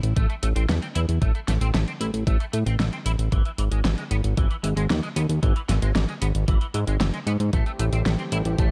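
A straight 4/4 pulse at 114 BPM drives this short synthwave excerpt, anchored by a knocking, up-front electronic kick and a layered pop kit of fat snare and warm hi-hats, both overdriven and re-recorded in a small room. A fat, detuned analog bass with a fast attack and a wave-folded sawtooth edge sits forward in the mix, holding down the low end with a filter sweep. From 0.2 seconds a clean, picked electric guitar plays a bright, scooped riff, lightly shimmering through ensemble chorus and tape echo. The harmony moves from A5 to Emaj7/G# at 3.3 seconds, and at 7.5 seconds a brassy, bold analog pad arrives in the background on Am7, swelling softly with vibrato, chorus and sidechain pumping. The production is dark and gently reverberant, giving the driving groove a cinematic glow.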